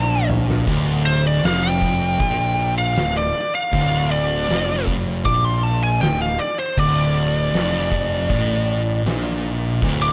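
Stoner and doom metal at a slow 79 BPM in D minor, this brooding, sludgy fragment from a longer piece opens on a drum fill as an up-front fuzz lead guitar solos high over two thick, distorted rhythm guitars grinding a low riff in the background, a growly overdriven fingered bass, and an oversized low-tuned kit with a fat snare and punchy kick, all sitting on a single D minor chord with little reverb.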